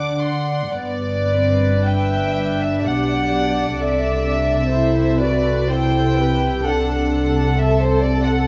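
Rubato phrasing in an unhurried triple metre shapes this serene, tender slow movement for string orchestra, a short fragment cut from a longer piece. An up-front violin section carries a pure, floating melody over a second violin line with light vibrato, while rich violas supply the accompaniment and dark cellos and double basses anchor the bass, each section bowed sul tasto with a soft attack. Close, intimate studio sound meets a moderate recital-hall reverb, giving the whole a dusky, gentle glow.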